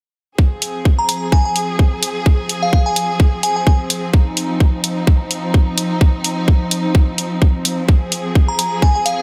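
An overdriven electronic kick drives this gritty, aggressive bass house excerpt up front with a tight punch, joined by a layered, distorted hi-hat in studio reverb, while a rich, smooth string section holds sustained chords that pump under sidechain and a glassy, crystalline FM bell with chorus, 12-bit sampler grit and dub echo rings out from 1.0 to 3.6 seconds and returns at 8.5 seconds.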